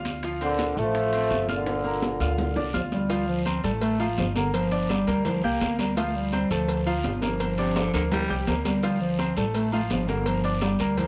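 A bright concert grand piano and a woody, thumpy upright bass played pizzicato open this driving, danceable salsa excerpt in minor, cycling between two minor seventh chords. Almost at once, a tight, punchy trombone section with light vibrato takes the melody up front, mellow yet roomy. From the very first moments, the percussion fills in behind them: ringing, high-tuned congas played with soft hands, raspy guiro, grainy maracas, metal-shell timbales with agogo bells, and very quiet low-tuned bongos with cowbell. At 2.7 seconds, a dark solo bass clarinet in classical style takes over the melody and carries it to the end. A gritty baritone saxophone with a clear tone adds a brief second line from 7.6 seconds, and two drum fills punctuate the groove. Light reverb gives the whole a small-room ambience, and the piano's deep bass and brilliant top sound especially present.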